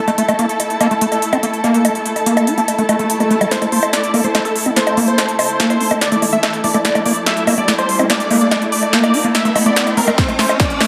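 A squelchy, gritty overdriven acid bass riff with resonant filter sweeps drives this hypnotic psychedelic trance piece at 144 BPM in A phrygian. It is set against a punchy big-room drum kit of crisp hats, snare and bongos, with a veiled, muted string section and a bright, pulsing gated texture of sustained chords in the background, both sidechain-pumped along with the bass. After a background swell at 2.9 seconds, a huge, thick supersaw melody with phaser and delay enters at 3.5 seconds as a build-up with drum fill and riser gets under way, and an up-front electronic kick lands at 10.2 seconds.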